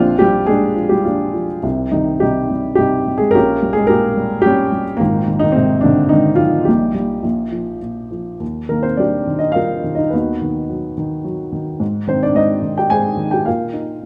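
Classical solo piano in a lyrical, hopeful vein, this brief excerpt from a longer piece features a dark upright piano played up front with rubato in triple metre, its woody, mellow tone, short sustain and audible action noise lending a vintage intimacy, all set in a moderate recital hall reverb as the harmony moves from an opening Bbadd9 through Cm and Absus2 before settling on Eb at 8.4 seconds and closing on Bbsus4.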